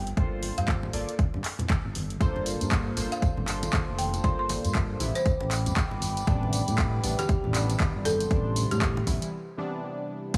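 A small, lightly reverberant room with a digital sheen frames this warm, smooth deep house excerpt, cut from a longer piece and set in a swung 4/4 groove. An up-front, punchy electronic kick anchors the beat, joined by an analog drum machine's crash, handclaps, hi-hat and tambourine, while very quiet congas add bright, soft-handed acoustic touches. A dark, gliding synth bass with sawtooth and square-wave tones pumps against the kick, and round, detuned analog keys play chorused, phased stabs that echo through analog delay. A dry, woody folk marimba struck with medium-hard mallets carries the rustic melody over chords moving from Gm11 to Am11, and a deep, moody pad enters in the background at 2.2 seconds. After a break begins at 9.3 seconds, a very quiet, warbling horn-like synth lead with vintage vibrato appears at 10.3 seconds on a single high note.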